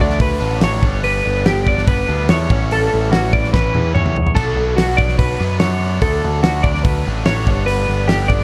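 Math rock and midwest emo with a playful, intricate mood, this short excerpt moves at 145 BPM in a straight 4/4 and sits in G lydian. A bright, twangy twelve-string electric guitar sits up front with clean, compressed arpeggios colored by harmonic tremolo, while a biting, double-tracked overdriven guitar plays a riff beneath it. A growling picked bass, overdriven and punchy, anchors the low end up front. A loose indie drum kit with a fat snare, punchy kick and dark cymbals drives the groove, including crash and splash hits, hi-hat and toms, with a fill from 3.5 to 4.4 seconds. The chords cycle through Bm9, G, A7(no3), Bm9, Dmaj7 and back to G, and the whole band plays throughout in a small room with a dark, warm production.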